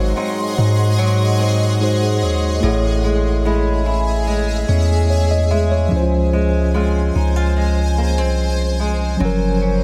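A slow, straight 4/4 pulse at 73 BPM carries this tender, romantic contemporary R&B excerpt, cut from a longer piece and tuned to A4 = 442 Hz. Up front, a long sustained 808-style bass sits deep and sine-like, each note striking with a fast attack before decaying. A mellow tine electric piano supplies clean accompaniment heard as if through built-in speakers, while a boxy acoustic flamenco guitar plays fingerpicked arpeggios with audible finger squeak. Above them, a granular cloud pad holds bright, blurred, evolving chords with a slow attack, long release and its own built-in reverb. All four parts play throughout the 9.8 seconds over a light reverb, moving through Ab7, Amaj7 at 2.6 seconds, Dbmaj7 at 5.9 seconds and Gbmaj7 near the close.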